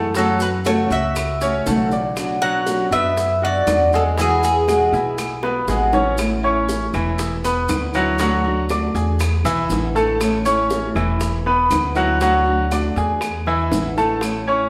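Heard in a reverberant large studio with the band playing live together, this relaxed, sunny Cuban son and guajira excerpt puts a bright, polished baby grand piano up front with ringing arpeggios and audible action noise, alongside a metallic, double-strung tres that carries the melody until 5.4 seconds. A fill at 5.4 seconds leads into a second section cycling through A, E7 and D. Beneath, a small, fingerpicked nylon-string guitar plays accompaniment, a dark, woody pizzicato upright bass anchors the low end, grainy, mellow maracas shake along, and tight high-tuned bongos and compressed, saturated claves sit in the background.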